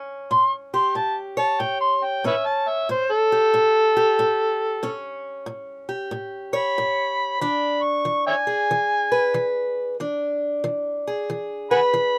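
A bright, boxy parlour steel-string guitar fingerpicks from the start with fresh strings and finger squeaks, and from 0.3 s an up-front amplified harmonica solos with gritty overdrive, light vibrato, scooped notes, tongue slaps and a jazz-inflected touch in this laid-back, soulful acoustic country blues, swung at 93 BPM in A mixolydian, moving from A7 to E7 at 7.4 s in a snug booth ambience before the fragment cuts off at 12.2 s.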